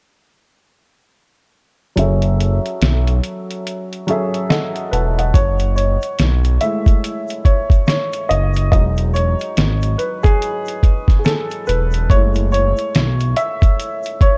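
Hazy and reflective, this lo-fi hip hop excerpt moves at 71 BPM in 4/4 with a 16th-note swing, set in F# dorian and cut from a longer piece. Upright piano, synth bass and a sampler-style drum kit all enter at 2.0 seconds. The drums sound compressed, pitched down and muffled, with a medium-tuned snare and hi-hat, while the thumpy kick stays muted until 5.3 seconds. During that opening stretch a filter sweep shapes the woody, worn upright piano, which sounds slightly detuned and sits up front under a low-pass filter. From 5.3 seconds the piano takes a solo over F#m7, Emaj9 and F#m9 chords, while a grainy, bright egg shaker ticks close and dry in the background. Underneath, the smooth synth bass blends detuned sawtooth and square waves with saturation, vibrato and sustained notes, all in light reverb and studio ambience.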